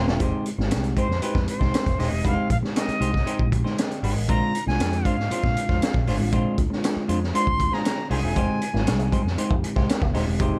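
A breathy, reedy jazz flute with vibrato leads this driving, sly funk excerpt at 118 BPM in F dorian, soloing over a crunchy, gritty breakbeat kit with a high-tuned snare, a picked bass through an envelope filter, a clean semi-hollow guitar and mellow tine electric piano stabs, while a mellow horn section with tape echo slips in around 7.7 seconds and a twangy, very quiet envelope-filtered guitar riff flickers briefly at the start and returns at 8.4 seconds over Fm9 and Bb9 in a dark, lightly reverberant mix.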